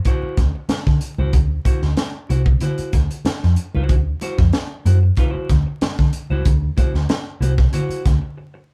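Funk with a strutting, funky swagger, this short cut from a longer piece sits on a single D9 chord in a straight four-four groove. Up front, a crisp fusion drum kit plays hi-hat, a tight kick and a high-tuned snare, its small, pumping room sound giving the beat real punch. Just as prominent, a hollow-body short-scale electric bass is picked with a dark, round, amped tone, moving between C2 and D3. A clean, picked electric guitar sits lower in the mix with a warm accompaniment between E4 and C5, while very quiet congas add thick-skinned, medium-tuned hand percussion played with soft hands. The band sounds like it is playing live together in one room under light reverb and a layer of vinyl crackle, and a brief break arrives at 8.4 seconds.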